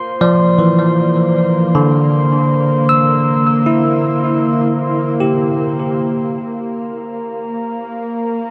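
Worn, warbling cassette tape colours this serene ambient excerpt, with warbly pitch drift and a huge, wet reverb tail that lingers for about 8.4 seconds. At 78 BPM in a straight 3/4, a bell-like tine electric piano sits up front, playing bright, clean arpeggios from D3 to E6 through tape echo until 6.4 s. Beneath it, a string-like bowed drone holds Bb3 throughout, its detuned sawtooth unison carrying a noise layer, vibrato and a tense edge as it fades in over the first 6.4 seconds. A glassy, ethereal glass harmonica floats between Bb4 and C6 with smooth, slow-attack tones in a boxy small-room sound, bathed in shimmer reverb as it fades out over the same span. The harmony moves from Bb to C9/D at 1.7 s, and once the piano stops at 6.4 s, the drone and glass harmonica hold the final seconds alone, with the whole piece tuned slightly low to A4 = 438 Hz.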